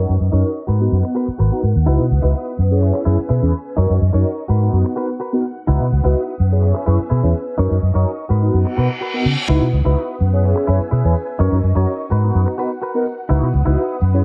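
A lightly reverberant, filter-swept mix carries this funky, groovy excerpt of disco house at 126 BPM in C# dorian, where a dark, round, punchy fingered bass sits up front beneath mellow detuned synth brass, a lush string machine holding sustained chords, and a twangy, clean direct-recorded guitar riff, cycling through F#6, G#m9, C#m11 and rootless F#9sus4 until a reverse cymbal at 8.7 seconds ushers in a very quiet, distant tambourine at 9.5 seconds.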